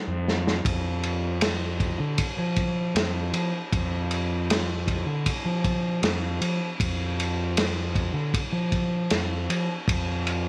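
A light reverb gives this brief cut from a longer psychedelic rock piece its mysterious, dark atmosphere. A fingered electric bass starts at 0.1 seconds, its overdriven fuzz tone dark and round as it moves between F2 and F3 close up front. A muffled, lo-fi vintage acoustic drum kit arrives with a short fill from 0.3 to 0.7 seconds, heard in a small room with a rolled-off top end, a punchy kick, a medium-tuned snare and ride cymbal. The two parts sit at an even level and carry a steady, straight 4/4 groove at 78 BPM until the cut ends near 10.5 seconds.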